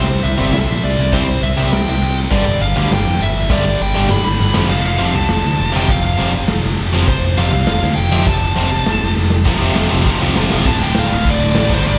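This angry, aggressive punk rock excerpt opens at 202 BPM in 4/4 in a heavy half-time feel, with a wall of picked electric guitars and a growly, up-front bass, and the raw garage drum kit joins at 0.2 seconds with a punchy kick, a medium-tuned snare and a dark, rolled-off top in a stone-room sound. Over the riffs, a high-gain lead guitar carries the melody in a dusky, distorted tone, thickened by slapback echo and digital delay. Beneath it, a biting overdriven guitar with its own slapback echo grinds out a riff, while a double-tracked high-gain guitar and a sludgy overdriven guitar sit further back, all riffing over a C, G5 and F progression. The drums fire off several fills, and at 9.5 seconds the half-time feel drops away as the harmony moves to F5 and then Dm, where the biting guitar stops at 10.7 seconds. The whole performance sounds like a live gig heard through the venue's PA, with a recital-hall reverb around it despite the otherwise dry sound.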